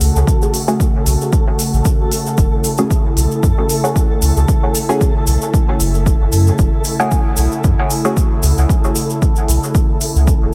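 An airy, breathy pad, muted detuned chord stabs with dub echo, a round sub bass, smooth electronic hi-hats, a bright tube shaker and a flickering granular texture open this cavernous, nocturnal dub techno excerpt in F# minor at 114 BPM with a light swing, joined at 0.3 seconds by a punchy, up-front electronic kick as the pad, stabs, bass and texture pump together around a single F#madd9 chord.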